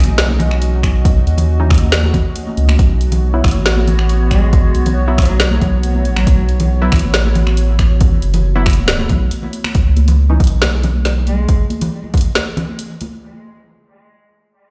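Driven by a punchy electronic kick at 138 BPM in a half-time 4/4 feel, this brooding, meditative deep dubstep excerpt rides a thick, saturated sub bass and a deep house kit of finger snaps, dark hats and a woody snare, with acoustic congas trailing dub echo. A moody analog pad with chorus and phaser holds C#sus2 and B5 chords under a muted, detuned sawtooth chord stab soaked in echo, while a bowed cello with vibrato and portamento sings a brief expressive line at 4.3 seconds. After a short break, the pad drops out at 9.7 seconds, and the rhythm section rings on through a stone room on a big sound system as the chord stab fades and the cello returns for a final fleeting phrase.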